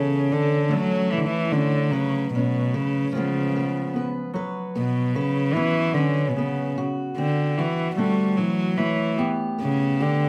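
A slow, straight 6/8 sway at 50 BPM, counted in dotted quarters, carries this melancholic, heartbroken acoustic folk-pop ballad, cut from a longer piece. Up front, a single intimate cello sings the melody sul tasto, with an airy bow, soft attack and light vibrato. A warm fingerpicked steel-string acoustic guitar accompanies it, and a bright, ringing Celtic harp spins arpeggios, all set in a moderate, large studio reverb.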